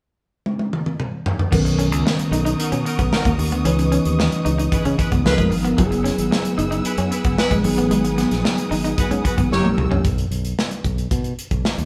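Upbeat and breezy, this polished 1980s jazz-funk pop passage opens with a fill from the punchy, up-front studio drum kit; at 1.5 seconds a growly fingered electric bass, a mellow tine electric piano, a twangy, slightly broken-up picked guitar riff and a smooth-topped bowed string section with expressive vibrato and portamento come in over chords like Bmaj9 and C#m9, a tight, warm jazz horn section adds a second line from 2.6 seconds, and the whole band sits in a moderate stone-room reverb as if playing live together.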